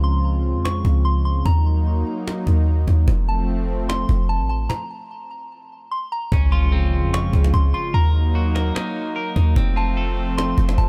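A soft, pure FM synth bell floats a gentle melody over a smooth, detuned sawtooth pad, with a deep, boomy 808-style bass up front and a woody cajon with faint snares, opening this blissful, floating stretch of atmospheric cloud-rap in a half-time feel. The music halts at 4.7 seconds, then an electronic impact in the background marks the return at 6.3 seconds, where a bright, twangy electric guitar joins with picked arpeggios through delay. The bell carries chorus and delay, the pad has chorus, and a digital ambience surrounds this passage cut from a longer piece.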